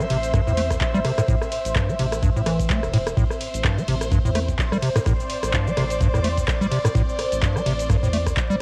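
Acid house at 127 BPM with a light swing on A minor, raw and playful, cut from a longer piece, as a squelchy, resonant square-wave acid bass riff sits up front with tube saturation over a round, dark analog bass, a lush phased string machine holding chords, a breathy detuned pad, a deep tape-warm electronic kick, a punchy analog drum machine with handclaps, hi-hat, ride, cabasa and rim click, and a barely audible gritty sampler-style kit, most parts pumping to the sidechain in a dry home cassette recording.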